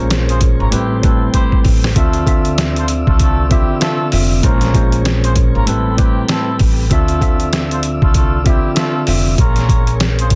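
Gritty, pitched-down sampler drums with a thumpy kick sit up front in this moody, tough boom-bap hip-hop excerpt, over a woody pizzicato upright bass, a worn, slightly out-of-tune tine electric piano with light overdrive, a distant cup-muted trumpet section playing soft, veiled stabs with tape echo, and a smooth tonewheel organ holding sustained chords through a fast rotary speaker in the background, with a drum fill arriving at 1.3 seconds.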